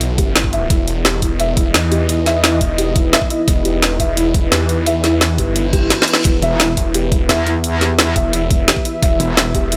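A straight 4/4 pulse at 173 BPM drives this tense, dark technical drum and bass cut from a longer piece, set in E harmonic minor over an Emadd9 chord. The drum kit sits up front with a woody snare and bright hats, both overdriven, while a knocking electronic kick joins at 0.2 s, all set in studio ambience. Underneath, a snarling distorted saw bass growls through the low register with detuned unison grit and sidechain pumping, and a dark analog pad holds moody, full-bodied sustained chords that breathe with the same pumping. A felt-muted upright piano plays soft, intimate arpeggios through a low-pass filter and tape echo, adding a vintage touch to the gloom. An electronic reverse cymbal sounds in the background at 5.7 s, joined by a drum fill at 5.9 s, and at 6.4 s a metallic, wobbling FM bass enters, bright and chorused, to thicken the low end with extra aggression.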